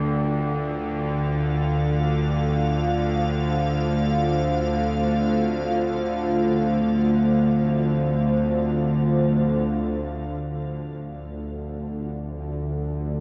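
In free time, this dark, desolate ambient drone in D minor sits on a single D minor chord, with a string-like, tense bowed-like drone low and up front, a deep, full-bodied dark pad holding sustained chords above it with chorus and shimmer reverb, and very quiet solemn tubular bells ringing metallic arpeggios until 9.7 s. An icy, crystalline glass pad drifts in at 1.0 s as airy texture and stops with the bells at 9.7 s, leaving the drone and deep pad to carry the final stretch to 13.2 s. The whole cut from a longer piece is bathed in a huge, wet reverb and the warbling pitch drift of worn old cassette tape.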